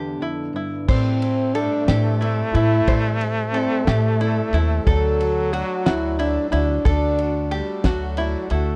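Yearning and bittersweet, this indie folk piece in A minor moves at 60 BPM in 6/8, opening on a G chord with an up-front French horn melody full of vibrato, a twangy, plunky open-back banjo playing arpeggios, and a fingerpicked steel-string acoustic guitar whose finger squeak is heard before it stops at 0.9 seconds. From there the arrangement builds over Am7 and then D at 4.9 seconds: a trombone with vibrato adds a second line, a boxy picked swing-style acoustic guitar sits in the background, a woody, thumpy upright bass with gut strings holds the low end, and a cloth-damped drum kit brings a fat snare, tight kick and dark ride and crash cymbals. The sound is a dry, close 1970s-style studio recording with light reverb.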